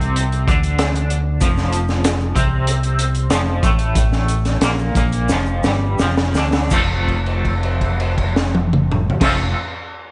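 This short, hazy psychedelic rock fragment, cut from a longer piece, opens with a twangy electric guitar riff, a gritty breakbeat drum kit and an overdriven bass all sounding together over a straight 4/4 pulse on an F chord. The guitar is bright, clean and picked with a scooped tone, its double-tracked line shimmering through tremolo in a kaleidoscopic way. Up front, the fingered bass is round and amped, while the drums are dark and saturated with a high-tuned snare, punchy kick, hi-hat, toms and crash cymbal under a rolled-off top. A grainy tube shaker slips in at 1.4 seconds, sitting in the background until it stops at 7.1 seconds. The pace slows as a drum fill leads into a new section at 6.7 seconds, where a held note rings until 9.2 seconds. Light studio reverb gives the whole a gentle room sound.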